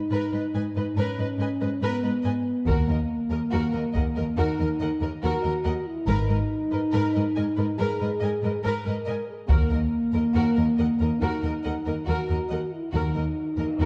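Heroic and dark, this cinematic orchestral film-score passage moves at a slow 70 BPM in Eb minor, cut from a longer piece. A dark French horn section sits up front with sustained chords throughout, while a cello section supplies a rich, up-front bass line, joined by a bowed chamber double bass section from 2.7 seconds. Above them, a vibrato-laden violin section carries the melody from the background, a second, smooth violin section adds a second line, and a focused, close viola section fills in the accompaniment. A taiko ensemble struck with heavy sticks in a small room punctuates the passage in two bursts, the first at 2.7 seconds, as the harmony alternates between Abmadd9 and Ebm. A huge, very quiet cymbal swell arrives at 13.4 seconds, and the whole is set in a moderate scoring-stage reverb with a dark, warm production.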